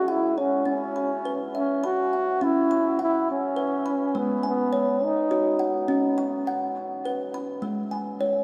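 A clear, close-miked trombone carries the melody in a soft jazz style, its notes scooped with a gentle attack and a touch of vibrato, sitting up front until it falls silent at 5.7 seconds. Alongside it, a woody kalimba, also up front, plays ringing arpeggios across a broad register with a mellow fingertip pluck, continuing alone to the close at 8.4 seconds. This short excerpt from a longer piece is gentle, meditative world music built on tuned percussion, moving at 69 BPM in a straight 6/8 within C# minor pentatonic, tuned to A4 = 443 Hz. Both instruments carry a diffuse ambient delay and sit in a vast, echoing cathedral reverb that lingers for about 6.0 seconds. The harmony drifts from C#madd11 and C#m toward G#m, touches C#7sus4, and settles back on G#m.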